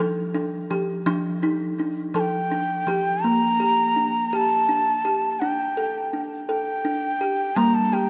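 A kalimba opens the fragment on its own, plucking gentle arpeggios in a steady 6/8 with a woody, airy tone placed up front and softened by tape echo. At 2.2 seconds a breathy bansuri enters with a high melody, its bamboo voice carrying a crisp attack and a touch of vibrato, also treated with tape echo and sitting close to the listener. Both parts float in a deep cathedral reverb that lends the meditative world-music setting a spacious, lingering glow. The harmony moves from F to G minor, passes through a bare D5, and settles back on G minor. Both instruments play on until the piece is cut at 8.1 seconds, leaving a calm, contemplative impression.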